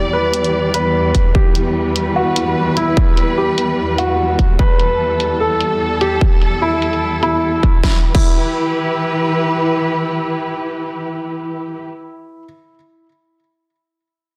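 A punchy, overdriven electronic kick sits up front in this chaotic, menacing heavy wobble dubstep piece, entering at 1.1 seconds and driving a 148 BPM half-time feel in 4/4 with a light 16th-note swing. Around it, a layered dubstep kit of crash cymbal, hi-hat and a deep snare carries the same overdrive, its hats, snare, cymbals and room all dulled by low-pass filtering, and the kit falls away with the kick at 8.3 seconds. A dark, lush studio string section holds sustained E minor chords across a broad range, bowed with vibrato and a woody, smooth-topped tone that carries a vintage 12-bit sampler grit and a sidechain pump. Over this, a dark, mellow and worn baby grand piano plays the melody in a narrow middle register, its long sustain trailing through a digital delay until 12.4 seconds. Tuned slightly low to A4 = 438 Hz, this excerpt moves from an opening section into a brief second section, all set in a moderate digital room reverb under a dense, heavily limited modern master.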